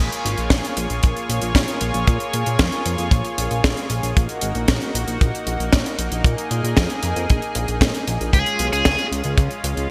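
A bright, 1980s-style digital production with light reverb and studio ambience frames this nostalgic, melodramatic italo disco excerpt in straight 4/4. A lush, airy unison pad of detuned sawtooth and square waves with chorus sustains chords from A#m7 to F#6 over a fat analog bass with a sawtooth filter pluck, while a dry funk kit's high-tuned snare and hi-hat, treated with gated reverb, sit up front beside a tight acoustic kick. At 8.3 seconds, as the harmony arrives on C#, a distorted, high-gain electric lead guitar enters on a picked G#4 with digital delay.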